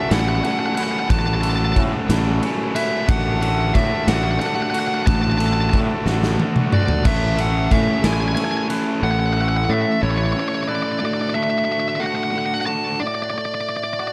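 A slow 6/8 pulse at 60 BPM carries this soaring, cinematic post-rock excerpt, where a dark fuzz lead guitar sings its melody with analog delay over a growly, up-front fuzz bass, sludgy and tight distorted guitar riffs, twangy clean arpeggios with subtle chorus, mellow bell-like glockenspiel figures struck with soft plastic mallets, and a big rock drum kit with punchy kick in a bright stone room that plays a fill at 6.1 seconds and stops at 8.9 seconds, leaving the bass, guitars and glockenspiel over chords moving from F#m7/A through D/A and A in a small, dark room.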